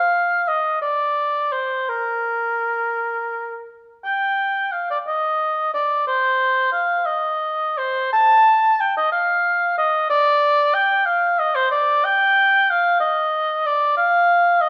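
A resonant recital-hall reverb surrounds this grave, solemn fragment from a longer classical piece, a baroque-style fantasia for unaccompanied oboe in 6/8 with a free, rubato feel. The warm oboe plays alone from 0.0 to 14.7 seconds, sitting up front yet carrying a roomy, distant quality, its vibrato-tinged line moving between Bb4 and A5. An opening phrase gives way at 4.0 seconds to a return of the same material.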